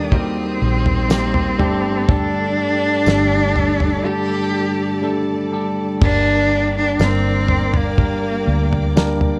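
Heard through a worn, warbling old-tape sound with studio reverb, this melancholic, emotional pop ballad excerpt in G minor at 61 BPM sets a rich, bowed cello melody over bell-like tine electric piano, lush background strings, a twangy clean electric guitar arpeggio with delay that stops at 6.5 s, a round, foam-muted fingered bass, a damped 70s drum kit with a fat snare and dark cymbals, and a jingly tambourine from 1.1 s, with a break between 4.0 and 6.0 s as the chords move from Eb through Gsus2 to Gm.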